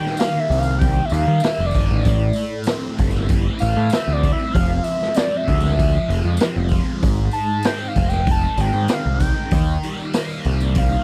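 Psychedelic rock with a hazy, hypnotic mood, this brief excerpt features a screaming, sawtooth-edged synth lead soloing with chorus and slapback echo over a double-tracked fuzz guitar riff colored by phaser, a growling overdriven bass that enters at 0.5 seconds, a boomy, saturated garage drum kit and a faint jingly tambourine, all captured in a dry, close 1970s-style studio sound.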